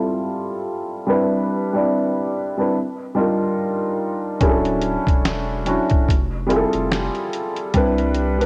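A felt-muted upright piano opens this cosy, dreamy lo-fi hip hop fragment at 72 BPM, its soft, mellow tone carrying audible action noise and a cassette-tape haze as a filter sweep plays across it through chords like Fmaj9, Cmaj9 and Ebmaj9. At 4.4 seconds a compressed, pitched-down sampler-style drum kit joins with a thumpy kick, medium-tuned snare, hi-hat and finger snaps in a swung 16th-note feel, alongside a deep, thick saturated sub bass. The intimate piano and muffled drums sit up front in a light reverb on this home cassette recording.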